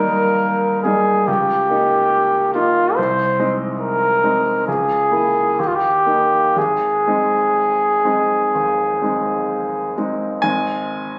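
A dark, vintage-toned trumpet sings a serene, tender melody in its middle range from the first moment, up front over a brilliant concert grand piano whose accompaniment reaches into deep bass. This romantic classical duo in Ab major moves in a rubato 4/4 at roughly 59-72 BPM, with harmony that settles from Eb onto Ab near the end. The trumpet falls silent at 10.0 seconds and the piano rings on alone until 11.2 seconds in this brief, fairly dry passage cut from a longer piece.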